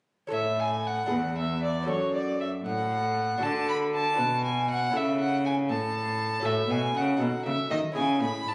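In a rubato 6/8 that moves with a radiant, flowing grace, this baroque-style sonata movement, cut from a longer piece, sets a warm, reedy period violin up front over a delicate, bright fingerpicked lute on doubled gut strings and a rich, bowed cello bass, all three playing together from 0.3 s to 8.5 s in a moderate recital-hall reverb with a club-like ambience, captured on a phone in the room, as the harmony travels from A through E7 and F#m to come to rest on C#m.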